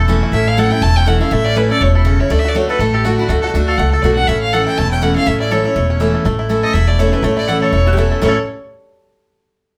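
A swung, driving 243 BPM bluegrass groove in A major carries this joyful excerpt, with a smooth, rich bowed fiddle on melody over a bright, full-bodied picked acoustic guitar and woody, thumpy pizzicato upright bass up front, twangy fingerpicked banjo arpeggios, and a nasal, metallic slide resonator guitar slipping in from the background at 7.9 s, all set back in a reverberant studio room.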